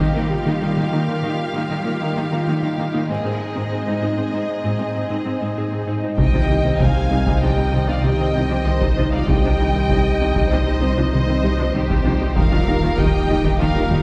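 Cinematic hybrid orchestral and electronic film score in C minor, futuristic and tense, moving at 97 BPM in a straight 5/4 through Ebadd9, Ab and Cm chords. Clear bowed violins, rich violas and cellos, a hollow flute-like pad and very quiet glassy, detuned wavetable pluck arpeggios open together, while a felt-muted upright piano with audible action noise murmurs underneath from 0.3 seconds. At 6.2 seconds a lush vibrato violin melody, dark distant French horns, very quiet bowed double basses, a deep sine sub bass and compressed, saturated taiko drums on hard sticks join, all set back in a wet scoring-stage reverb with lossy compression artefacts in this cut from a longer piece.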